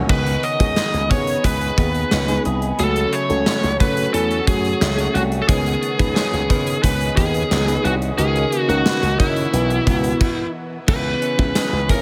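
A gated 1980s drum kit with a punchy kick, bright cymbals and tambourine drives this urgent, nostalgic 1980s-style pop excerpt at 89 BPM in a straight 4/4, alongside a bright slap bass through an envelope filter. Up front, an overdriven, biting lead guitar carries the melody, while in the background a clean, compressed direct-recorded guitar plays a riff with subtle chorus and digital delay, a lush FM electric piano with phaser adds accompaniment, and an ethereal, airy pad sustains chords, all three bathed in shimmer reverb. The harmony moves from G#madd11 through F#m/C# and Bsus4, a stop falls at 10.2 seconds, and a new section opens on C#m7 at 10.9 seconds.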